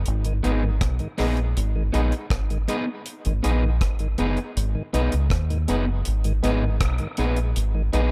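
Roots reggae at 80 BPM in G# minor, this meditative, hypnotic passage cut from a longer piece rests on a single G# minor chord. A deep, round fingered electric bass sits up front with a dry drum kit of tight kick, hi-hat and rim click, while a lightly overdriven tonewheel organ with vibrato and tape echo fills in the accompaniment. An electric guitar at the edge of break-up, dark and slightly gritty, adds tape-echoed accompaniment, all set in a studio reverb.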